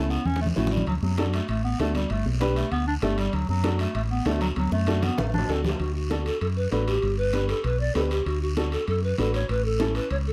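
Festive and joyful, this cumbia excerpt moves at 195 BPM in D major, with a round, up-front electric bass, a dark, boxy, slightly detuned upright piano and raspy guiro, bright high-tuned congas and ringing, distant timbales filling out the groove in a dark production with light reverb. A jazz-style clarinet with vibrato and scooped notes takes a solo from the start, with drum fills at 0.0 and 4.6 seconds. At 5.5 seconds a pure, wooden pan flute with a crisp chiff takes over the melody, carrying it to the end.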